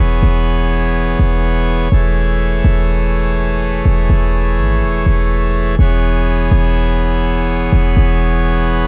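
A deep, boomy 808-style bass with a fast attack, a decaying sine tone and a noise layer sits up front beneath majestic, brilliant full pipe organ chords rich in mixtures and romantic voicing, both sounding throughout this floating, blissful half-time hip hop fragment at 124 BPM in E major, where the harmony moves from E6 to Amaj7/E at 1.9 seconds and back to E6 at 5.8 seconds within a small room ambience.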